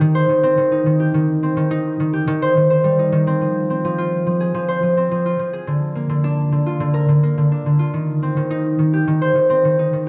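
A solo concert harp opens this short folktronica excerpt, its ringing, fingerpicked tone sitting up front in a moderate echo chamber reverb. The mood is wistful and delicate, moving at 106 BPM in a straight 4/4 feel and set in F dorian, with the harp tuned slightly high to A4 = 441 Hz. The harp plays alone throughout, ranging from D3 to C5 with an acoustic, warm character. It begins on a Cm chord, shifts to Fm at 3.4 seconds as a new section starts, then moves through Bb before returning to Cm near the close. The reverb lends the intimate instrument a sense of space, and the passage is clearly cut from a longer piece.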